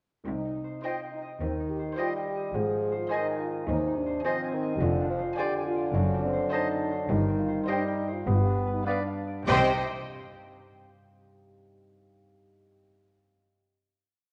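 At 104 BPM in an uneven 4/4, this quirky, sneaky orchestral cue in C minor opens at 0.3 seconds with mellow French horn chords, ringing harp arpeggios and rich bowed cello and double bass lines, then a focused violin melody, clear oboe and clarinet, hollow flutes and a lush viola section join at 0.8 seconds before an up-front bassoon counter-melody enters at 1.4 seconds, all wrapped in moderate stage reverb and worn, warbling old-tape pitch drift that gives the whimsical film music a faded, playful charm.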